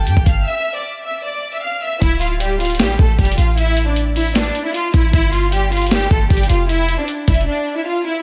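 A half-time 4/4 groove at 154 BPM drives this dark, eerie hip hop and trap cut in D minor, built on a gritty, compressed, sampler-style boom bap kit with a thumpy kick, medium-tuned snare and hi-hat that sits up front with a small-room character. A clean, deep 808-style bass with a sine tone, fast attack and boomy decay anchors the low end, while a lush bowed violin section, filtered and distant yet up front, carries the melody with vibrato, soft attacks and expressive portamento over chords moving from Dmadd9 through Dm, A5 and Fmaj9. The strings play alone from 7.5 s until the cut ends at 8.2 s, all under a light reverb and a softly rolled-off top end.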